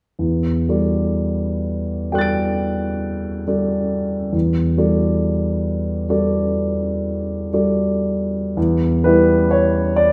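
Wistful and hazy, this brief fragment of impressionist solo piano drifts in a rubato 9/8, its concert grand sounding open and up front, with deep bass and long sustain ringing into the wet reverb of a recital hall as a lingering Em11 harmony settles onto a plain Em at 8.6 seconds.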